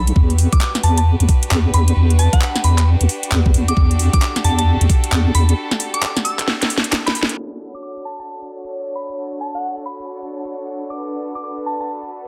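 A dense, heavily limited modern master with light reverb and a digital ambience frames this moody excerpt from a longer UK garage track in the two-step style. It runs at 133 BPM in 4/4 in B minor, with a skippy 63% swing on the sixteenths. Up front, a knocking electronic kick and a garage kit of cracking snare, metallic hats and handclaps carry a tape-warm edge, with soft clipping on the snare. A deep square-and-sine wobble bass with chorus anchors the low end under an Em9 chord until about 5.5 seconds. Above them, a pure, warbling FM synth bell carries the melody through chorus, phaser and dub echo, while an intimate violin section holds sustained sul tasto chords with light vibrato, pumping under sidechain and softened by a low-pass filter. After a break, a drum fill and a band accent lead into the second section at 7.4 seconds, where the harmony moves to Bm9 and a filter sweep passes over the violins.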